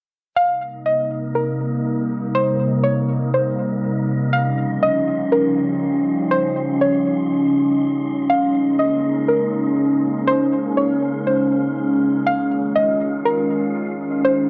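A half-time feel at 121 BPM in 4/4 gives this melancholic, spacious hip hop excerpt an unhurried sway, tuned slightly sharp to A4 = 445 Hz. A soft, round pluck carries the melody from 0.4 s, sitting up front with a dark, wave-folded tone shaped by chorus, a low-pass filter, cassette tape and analog delay. At 0.8 s a warbly, nostalgic pad enters with sustained chords, its detuned, slow-attack sound made mellow by chorus and built-in reverb. Underneath, a faint, breathy wind-like tuned noise texture adds an airy haze with its own reverb. The harmony moves through Cm7, Eb13, Bbm11 and Fm7, and the whole cut feels like a home cassette recording in a moderate room, heard as a fragment of a longer piece.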